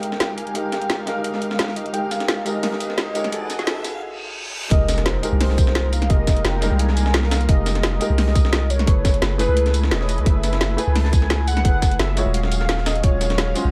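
Lightly reverberant digital ambience with a faint mains hum frames this lush, melancholic liquid drum and bass excerpt at 173 BPM, where a velvety, detuned sawtooth synth lead sings the melody over polished grand piano chords and dark, distant bowed chamber strings that pump in the background. Two layered drum kits drive the groove from the start: one brings woody snare, metallic hats and tambourine, and a gritty, pitched-up sampler-style break sits behind it. A riser, reverse cymbal and sub drop enter at 2.4 seconds, and at the drop at 4.7 seconds a tight, up-front electronic kick and a deep, mellow sine 808 bass arrive under the Fm11 and Gbm11 harmony.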